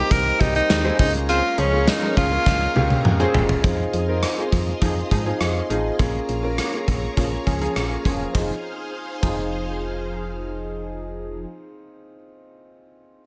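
Lightly reverberant and moody, this dramatic 1980s-style pop fragment opens with a bright, up-front tenor saxophone line carrying light vibrato and delay, which stops at 3.3 seconds as a drum fill from 2.5 seconds sets the polished, gated 80s kit with its punchy kick, medium-tuned snare and toms into the next section. Beneath them, a round, dark FM bass, shimmering vintage string-machine violins in the background, and a funky, detuned polysynth comping in chorused stabs fill out the harmony, while a concert grand piano with deep bass and long sustain plays on alone until 13.2 seconds.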